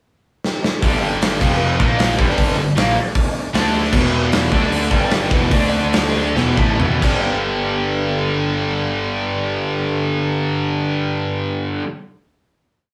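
A gated 80s drum kit with a punchy kick, bright cymbals and a bright stone-room sound kicks off this aggressive, driving hard rock piece in G dorian, with a fill at 0.4 s leading into a double-tracked power-chord riff from a compressed distorted electric guitar and a scooped high-gain guitar. A growly picked electric bass doubles the riff in driving eighth notes as the tempo, somewhere between 130 and 154 BPM, slows from 3.9 s toward a second drum fill. The drums stop at 7.1 s, leaving the guitars and bass to ring out a final G5 hit in a rough rehearsal-room sound with moderate reverb and saturation.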